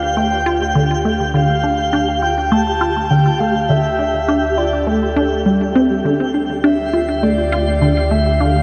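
A straight 4/4 pulse drives this excerpt of expansive, hypnotic, sequencer-driven space music: an up-front, squelchy resonant blip pluck repeats its riff through phaser and delay over a fat analog bass that fades in on D2, while a breathy, flute-like synth lead carries the melody with chorus, vibrato, shimmer reverb and delay, a twinkling granular texture sparkles high above, and the mix sits in a huge, wet reverb over a Dm7 chord.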